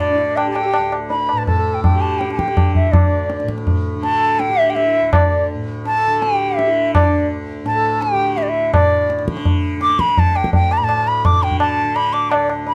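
Hindustani classical fragment in raga Durga on D, serene and meditative at 166 BPM and gradually speeding up, with an airy, tongued bamboo bansuri carrying the unsteady, vibrato-laden melody up front, a reedy, breathing hand-pumped harmonium playing a second line in a boxy small room until 8.8 seconds, a softly plucked tanpura drone buzzing and shimmering beneath, and a low-tuned, ringing tabla sitting close, all captured with detailed microphones and light reverb.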